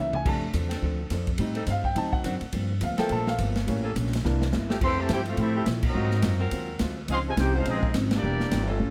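Light reverb surrounds this joyful, energetic big band swing excerpt, with the punchy kick and medium-tuned snare of the airy, polished drum kit and the woody pizzicato of the upright bass sitting up front at a brisk 211 BPM in 4/4. The opening stretch features the warm baby grand piano, open and short in sustain, taking a solo over a drum fill, while a dark, clean, compressed hollow-body electric guitar picks quiet accompaniment in the background. The saxophone section slides in under the piano with smooth-topped sustained chords carrying light vibrato, moving through rich harmonies such as Am7b5, D7b9 and Gm11. Another drum fill leads at 4.8 seconds into a new section where the clear, soft-attacked trumpets take the melody and the mellow trombones add a second line, both with a vintage jazz tone. Full-band accents punctuate this passage as the harmony shifts through Fmaj9, Ab13 and Dbmaj9 before the clip cuts off.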